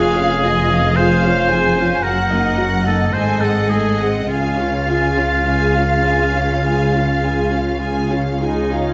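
A slow, rubato 4/4 pulse of 48-58 BPM carries this tender, lyrical romantic orchestral movement in Db major, cut from a longer piece, where a distant, lush violin section sings the melody alongside a second violin section with a smooth top, while a clear, up-front solo oboe with light vibrato adds its own second line, the viola section fills in a rich, even accompaniment, and woody cellos with double basses anchor the bass, the strings all bowed with vibrato and everything set in a moderate scoring-stage reverb as the chords move from Db/F through Ebm/Gb and Ab7b9 to settle on Db at 4.3 seconds.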